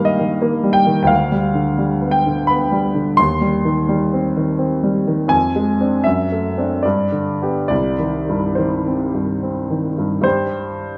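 Stormy yet bittersweet, this short cut from a longer romantic character piece for solo piano moves in a flexible, rubato three-beat metre. A grand piano carries everything alone from 0.0 to 11.0 seconds, reaching from deep bass at C2 up to C6. Its tone is clear but a little worn, sitting present and up front in the mix. The harmony is firmly minor and restless, passing through chords such as G7/D, Dm7b5/F and D7/F# before settling on C minor near 7.7 seconds and closing on a bare G5 at 10.2 seconds. A wet recital hall reverb, with a decay of 1.4 seconds, wraps the instrument in a sense of a real concert space.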